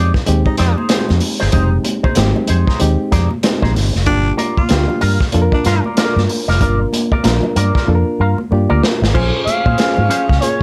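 Cool and sly, this funk excerpt sits at 95 BPM with a swung sixteenth feel, as a dark, punchy muted fingered electric bass and a crunchy, saturated breakbeat kit with a tight kick and dark cymbals drive it up front, while a clean envelope-filtered electric guitar with lush chorus accompanies and a reedy, worn, slightly out-of-tune electric piano plays stabs over Fm7 and Gm7. A raspy baritone saxophone carries a second line from 0.5 seconds, and very quiet, distant high-tuned congas add bright colour. After a drum fill and an electric piano fill, the harmony moves to Bbm9 at 9.1 seconds and a smooth sawtooth lead with portamento and vibrato enters at 9.4 seconds, all under light reverb.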